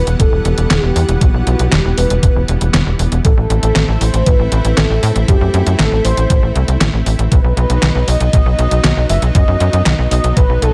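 A velvety sawtooth lead, a lush, detuned unison pad and a tight, nasal sequencer bass open this driving, moody synthwave piece at 118 BPM in E harmonic minor, tuned to A4 = 438 Hz, with chords moving from Emadd9 to Am to B. A detuned 8-bit drum machine with a fat snare, handclaps and hi-hat enters at 0.1 s, and a thumpy electronic kick follows at 0.2 s. The lead carries chorus, cassette-tape colour and delay, the pad is chorused and pumps with sidechain, the bass and drum machine sit up front, and the mix has little reverb.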